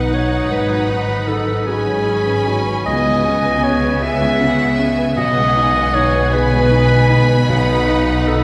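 A mellow solo clarinet sits up front in this sorrowful, longing cinematic film-score passage, carrying a classical-style second line with a smooth top. It moves at a slow 52 BPM in a rubato 6/8, a brief fragment cut from a longer piece that runs 8.4 seconds. Above it, a warm violin section sings the melody with vibrato, while a second violin section adds a clear, distant counterline of its own. An intense viola section and a felt-muted upright piano, soft and intimate in the background, fill out the accompaniment. The bass comes from an even, smooth cello section, also set back, joined by an expressive double bass section, all the strings bowed with vibrato in a lush ensemble sound. The harmony drifts from G#m7 to C#m7 and back to G#m7/B before settling on B, and a wet church reverb with a long 2.8-second tail gives the orchestra the spacious air of a church or concert hall.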